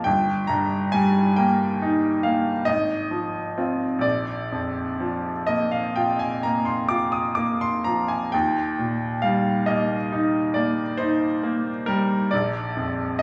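Bathed in a wet recital-hall reverb over a small-room ambience, this dreamy, tender fragment of a romantic classical nocturne in Eb major sets a brilliant, up-front solo grand piano, intimate with audible action noise and long sustain, drifting in rubato 9/8 at about 41-48 BPM in dotted quarters across a range from G1 to Eb6, moving from Eb/G through Fm7/Ab to Bb, returning to Eb at 8.3 seconds and ending on Bb at 12.3 seconds.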